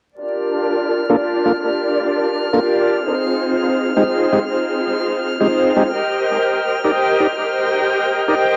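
Raw and atmospheric, this excerpt of drum and bass at 167 BPM in G minor moves through Gm7, Fm7 and Cm7, carried by an up-front, bowed string section holding rich, vibrato-laden chords under a low-pass filter and a filter sweep. A shouting tonewheel organ, lightly overdriven through a slow rotary speaker with dub echo, adds bright stabs from 1.1 seconds, while a calm, glassy texture of drifting overtones sits high above on a single sustained F6 with chorus. Cassette saturation, vinyl crackle and a moderate spring reverb give the whole a homemade, lived-in haze.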